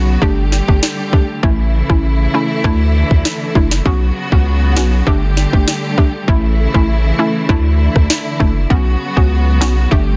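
An up-front electronic island pop drum kit with a tight kick, sharp snare and rim click drives this hypnotic, bouncy dancehall excerpt at 99 BPM in B minor, over a deep, saturated sine sub bass, a hollow, detuned square-wave pluck with chorus, and a lush, distant bowed string section whose sidechain-pumped sustained chords cycle through Gsus2, A, Dsus2 and Bsus2 in a dense, dry, heavily limited modern mix.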